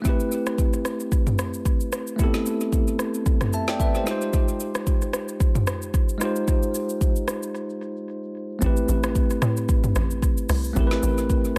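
Set in a light digital ambience with an echo-heavy sheen, this late-night amapiano cut from a longer piece feels deep, riding a swung sixteenth-note groove. A bell-like tine electric piano sits up front from the start, its bright, clean chords trailed by tape echo as the harmony moves from Am9 to Fm9. The layered, produced deep house kit carries the pulse with a deep kick, woody snare, smooth hats, shaker, rim click and toms, all placed forward in the mix. After a break at 7.5 seconds, the drop lands at 8.6 seconds, where a tight log drum bass enters with punchy, percussive FM notes layered with noise, their fast attack decaying into a mellow tail as the chords return to Am9.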